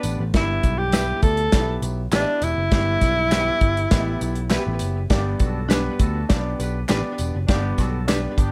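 With light reverb, this short cut of uptempo 1960s-style soul feels warm and joyful, built on a punchy, round picked electric bass and a small-room soul drum kit with a tight kick and rolled-off top, both up front, beneath a deep-bodied concert grand piano. A breathy, whispered tenor saxophone carries the melody with scooped notes and vibrato from 0.4 to 4.8 seconds, while a bright, twangy clean electric guitar adds compressed stabs with tape echo in the background, alongside tambourine and group handclaps. A dark, tight vintage horn section with light vibrato sounds briefly at the opening and returns at 5.1 seconds to carry a second line.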